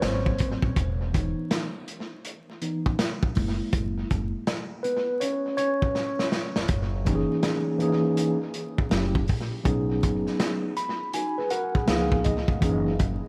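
A mellow tine electric piano sits up front in this smoky, unhurried jazz-hop excerpt, its clean tone colored by tape echo as it takes a solo over the first 6.7 seconds and adds a fill from 10.4 seconds. Beneath it, a crunchy breakbeat kit of kick, snare and hi-hat swings on the sixteenths, sounding saturated and gritty with a dark, rolled-off top, a tight kick and a medium-tuned snare, and its own tape echo. A pizzicato upright bass adds a woody, low foundation of steel strings throughout. The harmony drifts through rich extended chords such as G#7, F#9, F#7b9 and C#13, and a short drum fill ushers in the second section of the clip. Light reverb, an echo-heavy mix and a bed of vinyl crackle give the whole clip a hazy, late-night character.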